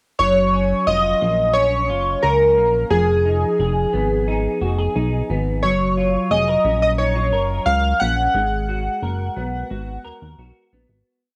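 At 0.2 s a glossy, detuned synth melody with analog chorus and tape echo plays motif-based phrases up front over a dark, rounded synth bass line with slides and a twangy, slightly broken-up electric guitar fingerpicking a roll pattern through cassette-tape warble, forming a dreamy, sunny bedroom-pop piece at 88 BPM in F# major that drifts through F#maj7 and Fm7b5 before fading out from 8.3 s.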